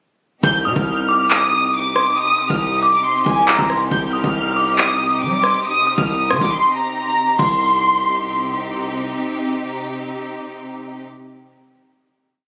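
Drill hip hop in C minor at 138 BPM with a half-time feel, dark and tense, where an up-front, lush violin section loops a vibrato melody with digital delay over a rich symphonic string pad and a distorted, heavy 808-style bass with pitch slides, while a delicate, tinkling FM synth bell adds a sparse counter-melody through chorus, phaser, tremolo and delay, and a knocking drill kit with crisp skipping hi-hat rolls drops out at 6.5 seconds before the final chord, where the violins, bell and bass fade by 9.1 seconds and the string section sustains until 11.0 seconds, all heard through light reverb with the ambience of a phone recording in the studio.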